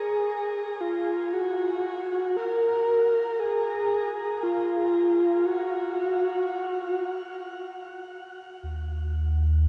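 In free time, this reflective, spacious ambient fragment in Eb minor, tuned to A4 = 437 Hz, opens with a breathy, flute-like synth lead that drifts between F4 and Bb4 with a soft attack, vibrato, analog chorus and delay, sitting up front until 7.6 s. At 8.6 s a round, deep sub bass arrives on a sustained Eb2 with a fast attack. A wet shimmer reverb with a 6.3-second tail and the worn, warbling pitch drift of old cassette tape colour the whole passage, which is cut from a longer piece.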